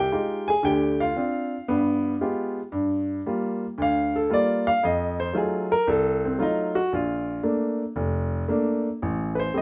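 The recording has a light reverb around a clear, natural baby grand piano that sits up front in the mix. This is a short solo jazz piece cut from a longer performance, moody and smoky in character, in G minor at 115 BPM in 4/4 with a swung eighth-note feel. The piano covers a broad span from F1 to Ab5, opening over rich harmonies such as Fm9, Dmadd11 and G7b9. At 2.7 seconds the music moves into a new section where the piano takes a solo, running through Gm7, F7b9 and Bbmaj7 before arriving on Am7 at 9.0 seconds. The result is an intimate, late-night jazz fragment carried entirely by one instrument.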